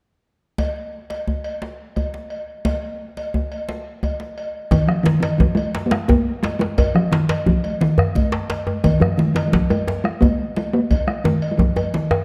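West African traditional drumming in a festive, earthy 12/8 at 116 BPM, cut from a longer piece, opens at 0.6 s with a metallic, distant cowbell and a deep, close djembe set in a moderate stage reverb. At 4.7 s the texture fills out as a resonant, up-front talking drum carries the melody between Eb3 and Bb3, joined by a dark bombo, very quiet high-tuned congas played with soft hands, and a second djembe whose tight, cracking tone sits up front. The production is dark and warm overall, giving the ensemble a weighty, grounded feel.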